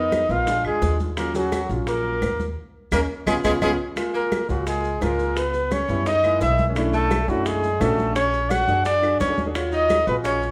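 Recorded live in one large studio room with moderate reverb, this driving, sophisticated Afro-Cuban jazz fragment puts a dark, vibrato-laden trumpet up front on the melody alongside a clear, close-miked tenor saxophone with scooped notes on a second line, over an intimate grand piano with audible action noise, a growly pizzicato upright bass, background congas, tight bongos and woody claves, and grainy maracas, with a band accent from 2.6 to 4.0 seconds capped by a drum fill.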